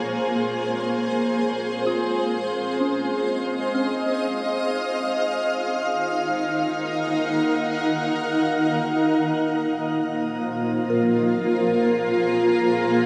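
A straight 4/4 at 64 BPM carries this reflective, spacious ambient passage in Bb minor, tuned to A4 = 445 Hz and cut from a longer piece: a bright, blurred granular cloud pad sits up front holding slowly blooming, detuned chords that move from Bbm7 through Ebm to Bb7 (third omitted) at 9.0 seconds, while a soft, pure FM synth bell plays mellow arpeggios in the background through chorus, phaser and tape echo, fading out across the first 9.0 seconds, inside a shimmer reverb with a 6.7-second tail.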